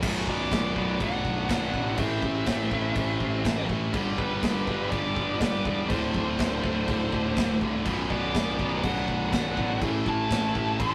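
A rough rehearsal-room recording with tube saturation, lossy compression artefacts and a small room's moderate reverb carries this relentless, epic heavy metal excerpt in B phrygian at 123 BPM, where three bright, distorted rhythm guitars, one of them double-tracked, grind out a riff in the background over a growly fuzz bass and an up-front acoustic drum kit with a boomy kick, medium-tuned snare and bright cymbals, while from 0.3 seconds a dark, bluesy lead guitar sings high above a warmer second lead line through chords moving from Bm to Am, G and D5.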